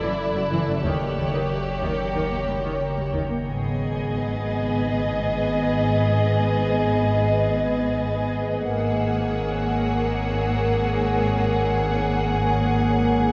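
Heard from further back in a reverberant scoring stage, this uneasy, tense suspense-film cue sets an expressive, vibrato-laden violin section melody over a focused second violin line, a smooth viola accompaniment, a clear cello bass joined by a double bass section from 0.5 s, a glassy, ethereal FM pad with chorus, a nasal, detuned organ-like drone and a faint high violin texture, with the harmony shifting at 3.5 s.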